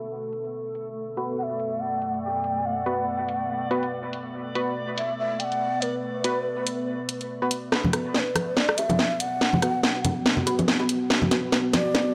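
Deep dubstep excerpt at 142 BPM in B minor, brooding and dark, with a half-time swung feel: a deep, moody pad with chorus and reverb and a reversed, granular swelling texture open under a filter sweep, an up-front garage kit with a cracking snare enters at 0.3 seconds, muted sawtooth dub chord stabs with dub echo and a breathy, close-miked bamboo shakuhachi melody follow, and bright congas and bongos join at 7.8 seconds for a build-up with a drum fill and a filter sweep on the stabs, all in a gritty, low-passed hardware sound.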